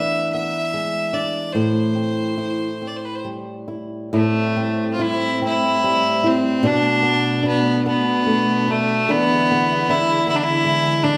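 Longing and mournful, this slow Celtic air in A minor moves at 48 beats per minute in 6/8, its pulse uneven and rubato. A single bowed fiddle carries the melody up front, its tone bright and earthy yet somewhat distant. A fingerpicked acoustic flamenco guitar with fresh strings, warm in tone and also up front, accompanies it. At 4.1 seconds a studio string section enters in the background, holding rich, smooth sustained chords with vibrato. The harmony moves from E7 to Am7, then Bm7 and back to E7, all heard in the wet reverb of a recital hall or church, in a passage cut from a longer piece.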